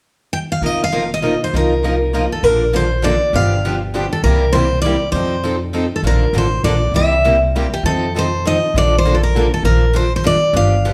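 A full-bodied, bright jumbo steel-string guitar opens this swinging, charming jazz manouche waltz in Bb major at 200 BPM, picking the up-front melody from 0.3 s. At 0.6 s a thumpy, woody upright bass with gut strings joins alongside two picked accompaniment guitars, one a concert guitar with audible finger squeak and the other a boxy parlour guitar with fresh strings that drops out at 9.5 s. The players sound live together in one room, bathed in a large, wet studio reverb, as the changes cycle through Bbmaj7, G7, C7 and F7 in a cut from a longer piece.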